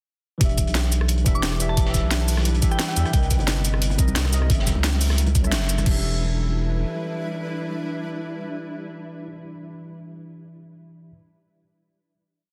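A dense, heavily limited modern master with light reverb frames this short, rolling, soulful liquid drum and bass piece, which lightly swings its sixteenths. From 0.4 seconds the drop arrives at full strength: an overdriven, knocking electronic kick and a layered kit with a cracking snare, bright hats, rim, shaker and crash play rolling two-step drums, while a dark, gritty looped breakbeat with edits sits in the background. Underneath, a deep, thick saturated sub bass carries an up-front, dub-style line, and a worn, slightly out-of-tune tine electric piano plays held chords with syncopated pushes through lush chorus and tape echo. A soft, pure FM synth bell adds short answering phrases, warbling through chorus, phaser, 12-bit grit and tape echo, and very quiet bongos and congas lend light hand-drum colour. From 1.9 seconds a shimmering, ethereal pad with octave-up shimmer and sidechain pumping joins in. 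Once the drums stop at 5.9 seconds, it holds the final Em7 chord alongside the electric piano and the sub bass, which carries on until 6.8 seconds.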